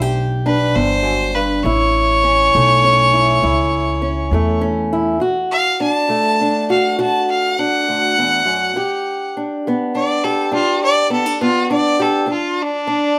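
Soulful and swaggering, this short cut from a longer acoustic country blues piece rolls along at 68 BPM in a straight 12/8, in D major, with a clear, earthy fiddle singing the melody up front in light vibrato over a woody, boxy fingerpicked ladder-braced guitar on old strings. A thumpy pizzicato upright bass with bright steel strings holds the low end until 5.2 seconds, when it drops out and the smooth-topped fiddle takes a solo over the guitar to the end at 13.2 seconds. Chords move from G to A, then D and G before the harmony falls away, all in a moderate studio reverb.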